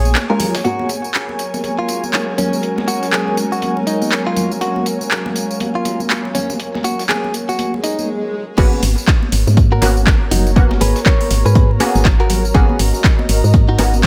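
Smooth and deep, this deep house excerpt moves at 121 BPM in 4/4 with a 60% swing on the sixteenths, set in G# dorian and cut from a longer piece. A bright, clean electric guitar, recorded direct and picked with compression, carries the melody through a delay, while high-tuned congas with hard hands ring from a distant large room and an airy, breathy pad drifts along with chorus and sidechain pumping. A muted, detuned sawtooth dub chord stab enters at 0.3 seconds and undergoes a filter sweep through the opening section, joined by a warbling, nostalgic tape-like pad with phaser that sits mellow in the background. Two drum kits run throughout: an overdriven deep house kit with metallic hats, handclaps, tambourine and crash, and a gritty, filtered sampler-style kit of hi-hat and snare tucked far back. After an electronic swell from 7.8 seconds and a brief pause in the harmony, the drop lands at 8.6 seconds, when a punchy, tape-warm electronic kick arrives up front alongside the woody, round FM bass. 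The chords rest mainly on G#m11 beneath a digital ambience.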